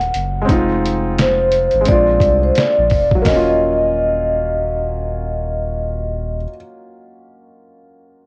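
Lo-fi hip hop at 87 BPM in 4/4 with a 16th-note swing, set in Eb dorian and carrying a nostalgic, hazy mood in this short passage cut from a longer piece. A vibraphone played with soft mallets carries the melody, its metallic, ringing tone shaded by a medium motor vibrato and softened by cassette tape and tape echo. Beneath it, a felt-muted upright piano sits up front with an intimate, thin-felt sound and audible action noise, also coloured by cassette tape, and it keeps playing after the other parts fall away, running until 8.3 seconds. A deep sub bass with an added octave blends sine and triangle tones, with a fast attack and sustained notes. The sampler-style drum kit is compressed, pitched down and muffled, with a thumpy kick and fat snare re-recorded in a small room, and it plays only until 3.4 seconds. The harmony moves from Fm7 to Bb7 before settling on Ebm7 as the second section begins at 3.2 seconds, all captured as a dry home recording on cassette.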